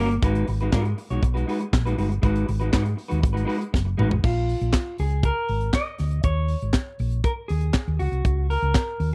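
A clean electric guitar and a round, hollow-body fingered electric bass open this glamorous, danceable disco excerpt at 120 BPM in a straight 4/4, with a tight funk drum kit joining almost immediately. The guitar has a dark, scooped, clean tone touched by spring reverb, while the amped bass sits low and up front beneath it. The acoustic kit sounds mid-forward and small-roomed, with a high-tuned snare, a tight kick, hi-hat, handclaps, toms and crash cymbal driving the groove. Over an Abm7 chord, a drum fill at 3.7 seconds leads into a new section at 4.2 seconds, where the guitar takes a solo across Bbm7, Eb5 and Dbsus24 harmonies to the end of the cut. The whole mix has a dry, close 1970s studio sound with little reverb.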